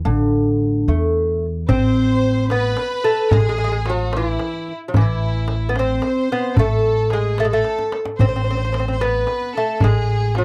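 Soulful and hypnotic, this short excerpt from a longer Persian modal ensemble piece moves in a straight 6/8, opening with a bright, delicate fingerpicked lute on gut strings, some octave-doubled, set up front with a woody, growly pizzicato upright bass beneath it. At 1.7 seconds a distant, earthy chamber violin section enters with a bowed second line and light vibrato, alongside a deep tombak played with hard hands, which adds a fill around 7.7 seconds. The dry, close studio sound recalls a 1970s session.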